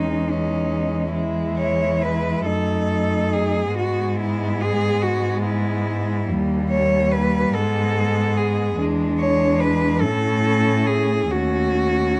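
A single bowed cello leads up front with the yearning melody, its rich, close tone smooth and even with vibrato, in this elegiac classical fragment for cello ensemble, moving rubato in 6/8 at about 47 BPM. Beneath it, a distant second cello sings a dark, woody line with a soft attack, a third cello adds a smooth, even accompaniment, and a fourth anchors the bass with a focused, vibrato-laden sound, the whole ensemble set in light reverb. The harmony drifts from C#m/E through E7 and A to a closing D#m7b5, tuned to A4 = 439 Hz.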